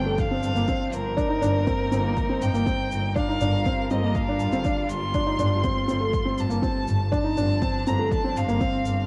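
This piano and strings electronica excerpt moves at 121 BPM in a straight 4/4, with a cinematic, intimate mood. A felt-muted upright piano carries a soft, mellow riff with short sustain, while a rich, distant violin sings the smooth, even melody with vibrato above it. Underneath, a string quartet holds bowed chords far in the background, its expressive portamento lending color, and a clear, focused chamber double bass section anchors the low end with a sidechain pumping effect. From 0.2 seconds a punchy, layered electronic kick drum and a background electronic shaker and toms enter, re-recorded in a small room. The piano, quartet and drums carry a cassette tape character, and the harmony drifts through Dm7/G, Cm7/G, Gm7 and Fadd9/G under a moderate studio reverb with a homespun feel.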